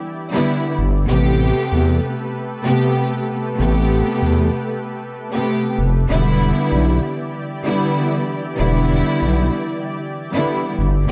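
A close, intimate string section opens this dark, tough hip hop excerpt, bowed softly sul tasto with gentle vibrato, while a lush, detuned sawtooth pad sustains chords in the background with a chorus effect. At 0.8 seconds a growling FM bass enters up front, thick and sine-based, with a fast attack and sustained low notes. The groove sits at 96 BPM in 4/4 with a light swing on the sixteenths, in A minor, tuned to A4 = 437 Hz. The harmony moves from Em7 to a long stretch of Am9 at 1.1 seconds, returning to Em7 at 6.1 seconds. A small room reverb and a dark, warm production give the piece a shadowy, compact sound.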